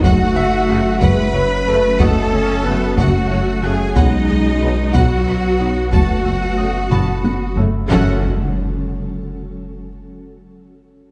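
A cinematic hybrid of orchestral and electronic film score, this brooding, futuristic excerpt moves slowly at 61 BPM in 6/8, set in F# dorian and passing from F#madd9 to B and back to F# minor. A hard-stick taiko ensemble drives the passage, while the double basses, a deep sine-and-triangle sub bass and a clear cello section anchor the low end. Lush bowed strings carry the harmony: a soft-attack violin section sings the melody in the background over a focused second violin line and a smooth, even viola accompaniment. Mellow French horns and a dark, distant trombone section, entering at 0.7 seconds, hold sustained chords beneath an ethereal, detuned pad with a slow attack and its own chorus and reverb. A glassy, crystalline wavetable pluck spins very quiet arpeggios with a filter sweep, and a concert grand piano adds high, delayed texture. After a drum fill, an up-front electronic impact lands at 7.9 seconds, all within a dark production and a moderate scoring-stage reverb.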